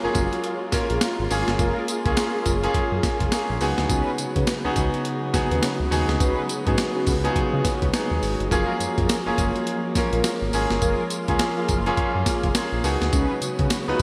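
A swung sixteenth-note groove in 4/4 drives this upbeat, bouncy new jack swing fragment. A gritty, compressed breakbeat kit with a thumpy kick, tambourine, hi-hat and snare, all bathed in gated reverb, arrives at 0.1 s, up front alongside a clear, polished grand piano, while a smooth, detuned sawtooth synth bass holds the low end. In the background, brassy synth stabs with chorus, digital delay and a filter sweep sit over dark, woody bowed strings, all cycling between F#maj9 and C#7sus4 in a bright 1980s-style digital mix with a lush hall reverb.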